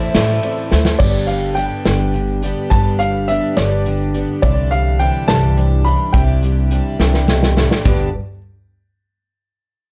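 In a lilting 6/8 swing-free sway, this uplifting, hopeful indie folk passage opens with a brief, distant French horn and a soft bowed chamber string section beneath a woody upright piano melody carrying a slapback echo, while a shimmering, octave-doubled twelve-string acoustic guitar, a punchy acoustic drum kit played with bundle sticks, a pizzicato upright bass up front, a grainy egg shaker and a mellow grand piano fill in the background build the arrangement, a bright fingerpicked steel-string guitar joining at 1.0 s and the grand piano returning at 4.4 s before a drum fill at 7.0 s, all in a dark, warm production with light reverb.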